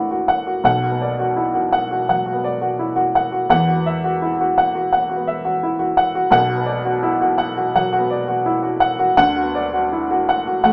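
Wistful and intimate, this short excerpt of rubato neoclassical minimalist piano features a solo upright piano with a worn, woody, slightly detuned tone, placed up front in a moderate studio reverb as it drifts through chords of D6, Bm and Esus2 before returning to D6 at 9.2 seconds.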